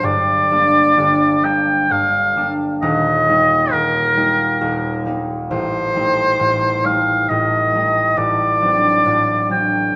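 Romantic classical music for oboe and harp, solemn and melancholic, moving in a flexible rubato three-beat lift through this 10-second passage cut from a longer piece. The warm oboe sings the solo melody with light vibrato and a distant, roomy tone, while the concert harp sits up front with fingerpicked, ringing accompaniment reaching deep into its low register. A wet recital-hall reverb surrounds the duo as the harmony moves from Gm through Eb and Am7b5 to D7/A.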